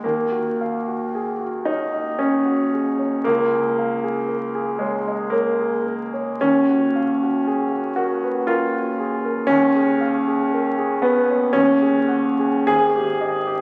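A clear, up-front concert grand piano opens this nocturnal, wistful fragment of impressionist classical solo piano, drifting with uneven, rubato beats at 57 BPM in 3/4 through Eb minor harmonies such as Ebm11, Db69 and Ebm9, its deep bass and long sustain blooming in a wet concert-hall reverb amid the crackle of a very old 78 rpm record.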